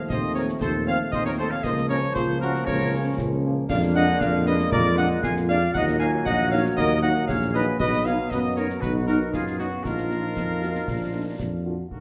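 A soft-attacked, smooth-topped tuba sits up front on the bass of this martial, resolute wind-band march in Bb minor, moving at 117 BPM in a straight 2/4, while a solo cornet carries the melody and a euphonium, a distant woodwind section and an airy flute group with vibrato add second lines. Clear trombones hold sustained chords, a very quiet, roomy French horn section fills in the accompaniment, and close, dry concert snare, bass drum and dark-toned clash cymbals complete the band. The ensemble rings in a wet recital-hall reverb, and this cut from a longer piece lasts about 12 seconds.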